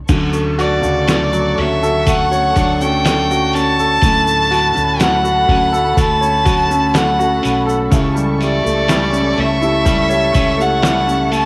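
A rich, bowed solo violin carries the melody up front, its smooth, even tone shaded with vibrato as it enters at 0.6 seconds. This is a heartfelt, tender pop ballad in a straight 4/4, cut from a longer piece. A clear, natural grand piano provides the accompaniment, while a fingerpicked nylon-string guitar sits in the background with full-bodied arpeggios. Behind them, a dark, woody studio string section holds lush sustained chords with a touch of plate reverb, and a round, amped fretless electric bass anchors the low end. A compressed, pitched-down, muffled sampler-style drum kit with a thumpy kick, medium-tuned snare, hi-hat and crash is joined by a grainy, mellow tube shaker far back in the mix. The harmony moves from Dmaj7 to A7/C# at 7.9 seconds, and the whole piece has the homespun feel of a cassette recording, with tape colouring the piano, strings, guitar, drums and violin, light reverb, and a faint mains hum.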